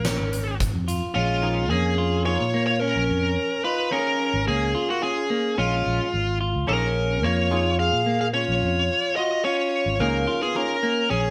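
This tense, intricate progressive instrumental, cut from a longer piece, opens at 108 BPM in 5/4 in Bb minor on a Bbm7 chord. A bright, overdriven lead guitar carries the melody up front, a twangy, slightly broken-up electric guitar picks arpeggios, a punchy fingered bass holds the low end, and a huge arena drum kit with a fat snare plays only until 1.0 s. A breathy alto saxophone enters at 1.2 s with an intimate, whispered second line in jazz style with light vibrato, and at 1.4 s a dark, clean, hollow-body archtop guitar adds compressed accompaniment in the background, all set in a moderately reverberant stone room as the band plays live together.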